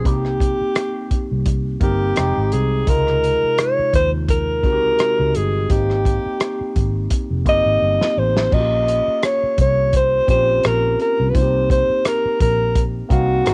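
A small-room home recording on cassette frames this lush, bittersweet 1970s-style soul excerpt, with a cinematic mood over a lightly swung groove and chords moving from Cm7 through Dbmaj9 and Bbm69. Up front, a warm alto saxophone with vibrato carries the jazz-style solo melody through a cassette-tape coloring, while a bright, barky tine electric piano plays clean accompaniment through a combo amp and a phaser. Beneath them, a dark, round, foam-muted fingered bass with transformer saturation pairs with a tight, punchy drum kit of fat snare, rim click, hi-hat and dark cymbals, which plays a fill at 7.8 s.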